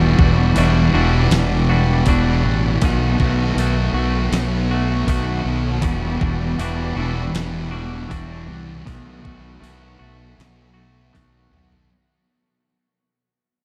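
A dreamy mix soaked in huge ambient reverb carries this brooding, melancholic shoegaze and dream pop fragment, cut from a longer piece and fading out across its full length. A thick, distorted fuzz guitar with lush chorus and a punchy, overdriven fuzz bass sit up front with the riff and low end, while a clean, compressed semi-hollow electric guitar with reverse reverb picks out its own riff over a slow Em9 to B7 sway. A tape-warm, sampler-style 12-bit drum machine with a thumpy kick enters at 0.2 seconds and closes on a drum fill from 11.1 seconds.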